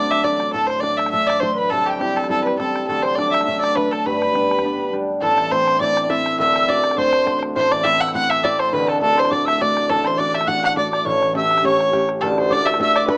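This rough home demo has a small-speaker sound and a moderate small-room ambience, capturing a rollicking, cheerful Celtic reel at 206 BPM in 4/4 with a light swing on the eighth notes, cut from a longer piece. A single bowed fiddle carries the melody up front, its tone rich and earthy with light vibrato and a smooth top. Above it, a metal tin whistle adds a second line, airy and bright, with tongued notes, vibrato and a touch of chiff. A concert harp, also up front, is fingerpicked and ringing across a deep-to-middle range, while a damped, tight bodhran sits close and dry in the background from 0.1 seconds. The tune moves through D, C and G before repeating its opening section in a more minor-leaning turn through Am and A7 back to D, with a brief break at 4.6 seconds marking the seam.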